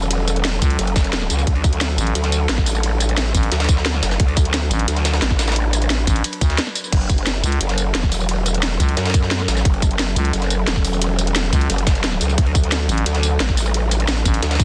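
Dark technical drum and bass at 176 BPM in F# minor, this tense excerpt sets a metallic, eerie FM drone of sustained chords with chorus and a built-in reverb behind a saturated, wobbling growl bass with overdrive, while a thick FM bass joins it at 0.6 s over the F#m and D harmony. Up front, a layered drum kit with a cracking snare, crash, hi-hat and tambourine drives alongside a tight electronic kick. A gritty, high-tuned breakbeat kit with high-passed snare, hats and ride sits in the background. The mix is dense and heavily limited, with the drone and growl bass both pumping against the sidechain.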